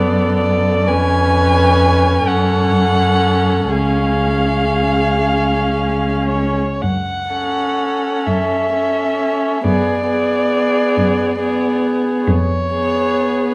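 Classical chamber music: a slow, romantic string quartet movement in F# minor, moving in a rubato 6/8 at roughly 35-46 BPM in dotted quarters, with a solemn, yearning mood across this 13.5-second fragment of a longer work. A focused, up-front violin with vibrato carries the melody over a second violin's dark, airy, intimate line, while a smooth, even viola fills in the accompaniment and a rich, close cello anchors the bass, each part bowed by a single player throughout. A moderate recital hall reverb of 1.3 seconds surrounds a dusky, warm production touched by lossy compression artefacts.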